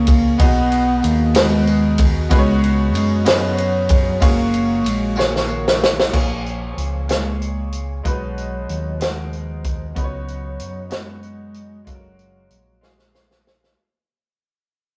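Jubilant and hopeful, this slow gospel piece in 6/8 at 63 BPM in F# major features a dark bass clarinet carrying a smooth, jazz-inflected melody with vibrato over a brilliant, woody, slightly detuned upright piano and a round, punchy fingered electric bass. A natural country drum kit sits up front with bright cymbals and a punchy kick, adding fills at 5.2 and 12.8 seconds, while a very quiet, jingly tambourine joins only until 5.8 seconds. The rough rehearsal-room sound carries light reverb, and this cut from a longer piece begins fading out at 6.1 seconds through chords such as B6, C#9sus4 and F#maj9.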